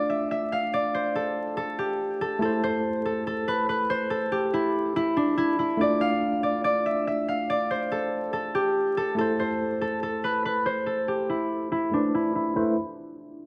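Dark and menacing, this half-time hip hop fragment, cut from a longer piece, sets a fingerpicked concert harp up front, its acoustic tone ringing as it carries the melody over a chord cycle that moves from Dm/A to Am and settles on Amadd9 at 9.2 seconds. Beneath it, a worn, slightly out-of-tune tine electric piano supplies the accompaniment, lightly overdriven as if played through built-in speakers. Vinyl crackle, a low-pass filter and small-room ambience with light reverb lend a dusty intimacy, and a filter sweep marks the closing passage from 9.2 to 12.6 seconds.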